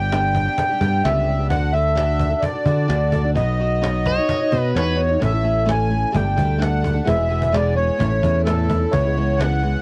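Folk rock and heartland rock with a jangly, warm mood, this straight 4/4 excerpt puts a sweet, dark accordion up front on melody over picked steel-string acoustic guitar with finger squeak, a direct fingered electric bass and a woody cajon with faint snares and hard hands, while an overdriven slide guitar played with fingerpicks cuts in briefly at 4.1 seconds and a clean reed electric piano joins in the background from 5.2 seconds, everything but the bass carrying the character of a home cassette recording with light reverb.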